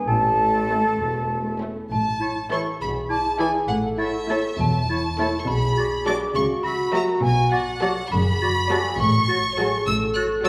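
Uneven 6/8 beats at 67 BPM carry this quirky, magical film cue excerpt in A major, where a worn, bell-like celesta, slightly out of tune, leads the melody over mellow French horn chords from the start, a soft-attack tuba joins dark double basses and cellos on the bass only until 1.7 s, lush violas and two rich violin sections (one carrying the melody from 0.7 s, the other in the background) fill out the strings, and an airy, distant silver flute, a roomy oboe and a classical-style clarinet entering at 2.2 s weave second lines inside a wet recital hall.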